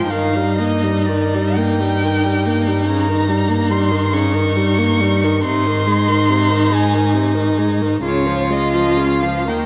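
Serene and tender, this slow, rubato string quartet movement in Ab major sways in 6/8 at 39-49 BPM: a distant first violin sings the expressive melody with portamento, a smooth, even second violin sits up front on an inner line, a focused viola supplies the accompaniment, and an up-front cello anchors the bass, each bowed by a single player with rich vibrato in a reverberant recital hall as the harmony passes from Eb/G through Eb7/G and Ab to Db across this excerpt from a longer piece.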